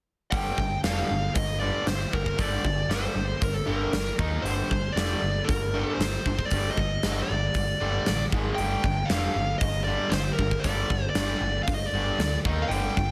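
Hard rock with a menacing, aggressive edge, this excerpt drives along in a straight four with a dark, smooth lead guitar carrying the melody up front, its overdriven tone trailed by tape echo. Beneath it a cranked, double-tracked stack guitar picks out a bright, overdriven riff over a warm, amped picked bass, while a huge arena drum kit with a punchy kick and a pumping hall sound sits forward in the mix. The chords move from G minor through power chords on Eb, G and Ab, all under light reverb and a small room ambience.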